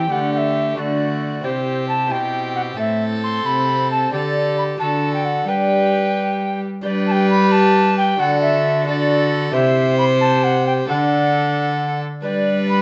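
A mellow, airy tenor recorder with chiff and vibrato carries the second line above a close, nasal gut-string violin melody in this courtly, festive renaissance-style consort dance in a straight 6/8 at 89 BPM in G major. It is supported by a delicate fingerpicked double-strung lute, a distant, rich viola with light vibrato and a dark, up-front cello bass, all five parts heard together throughout in a moderate stone room.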